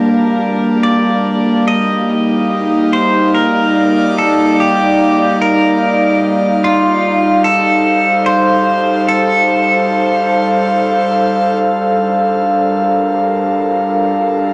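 A bright, breathy pad with a soft chorus shimmer sits up front through the whole excerpt, holding slow-blooming sustained chords that move from Gm9 through Ebmaj7/G and F7/G before returning to Gm9 at 11.6 seconds. Over it, a clean electric pedal steel guitar with fingerpicks, slide and volume swells fades in with a tape-echo melody that stops at 11.1 seconds. Then a dark, very quiet, wind-like tuned noise enters at 13.3 seconds in this reflective, spacious ambient piece in 3/4, its wet room and cassette recording giving a homemade intimacy.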